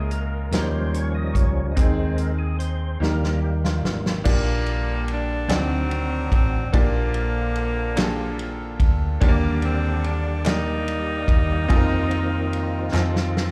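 Slow gospel in a straight 6/8 at 48 BPM, jubilant and hopeful, heard as if from a live gig through the venue's PA with club reverb around it, cut from a longer piece. A percussive, lightly overdriven tonewheel organ takes a solo over the opening 4.3 seconds, its sustained chords turning through a slow rotary speaker with chorus vibrato, while a brilliant, worn concert grand piano with deep bass and slapback echo accompanies throughout. A dark, round hollow-body electric bass and a natural, acoustic country drum kit with a punchy kick sit up front. The kit plays crash, hi-hat, kick, ride and a medium-tuned snare, with fills leading into the Bb major passage at 4.3 seconds and again near the close. There the close-miked saxophone section enters with the melody, its tone light-vibrato and pop-styled, also carrying slapback echo. Very quiet, crisp group handclaps join at 5.5 seconds, and the organ returns at 9.2 seconds as the harmony moves through Ebmaj7 to a suspended F7 and then F7.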